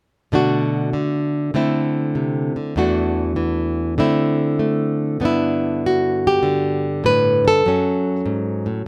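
Solo jazz in G major at a relaxed 98 BPM, with a playful, swung 4/4 feel, this short excerpt from a longer piece features a single fingerpicked nylon-string guitar, full-bodied and up front, with audible finger squeak and a light reverb. The guitar moves through Bm7, Dsus2 and E9sus4 before a second section opens at 5.2 seconds on Gmaj9, settling onto F#m at 7.6 seconds.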